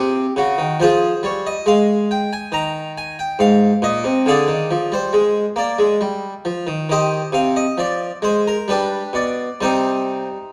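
A dark production places a close, up-front harpsichord inside a recital hall with a wet reverb tail of 1.7 seconds. This grave, flowing baroque-style suite movement in C minor moves at 68 BPM in 3/4 with uneven, rubato beats, the solo Italian-style harpsichord, strung with two sets of strings, giving a full, plucked tone across a range from Ab2 to Bb5. Cut from a longer piece, the 10.5-second passage opens on a rootless Bbm69, passes through a diminished chord at 4.3 seconds and a G chord, then settles on C minor at 9.6 seconds.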